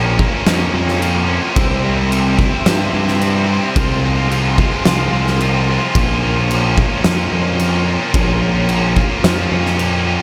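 A fuzzed, punchy picked electric bass with overdrive drives this brooding, cinematic post-rock excerpt at 109 BPM in straight 4/4, alongside a bright, double-tracked overdriven electric guitar riff up front, an oversized low-tuned acoustic drum kit with a boomy kick, fat snare and dark crash cymbals in a pumping big room from 0.2 seconds, and a lush, woody bowed string section holding sustained chords with vibrato in the background, all moving through Bbmadd9, C and Fm/C in light studio reverb.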